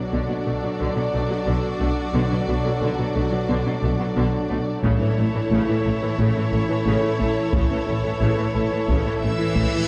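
This relentless, brooding passage from a hybrid orchestral and electronic film score opens on a Bm7 chord at a straight 89 BPM in 4/4, in B minor tuned to A4 = 443 Hz. A warbly, tape-like pad sustains nostalgic, lo-fi chords with chorus and its own reverb. Alongside it, a tight, driving sequenced synth with a detuned sawtooth pluck and phaser ripples very quietly through arpeggios. Bowed string sections fill out the harmony with vibrato: a distant, focused studio violin section carries a second line, violas play accompaniment, and a smooth cello section and a double bass section share the bass. At 4.8 s, as the harmony shifts to A, a close and dry taiko ensemble enters with heavy sticks, adding weight. Near the close, at 9.2 s, an expressive symphonic violin section enters on a lush high E6 with portamento, and at 9.3 s a huge, dark reverse cymbal sits in the background, all within a dark production and a concert hall reverb.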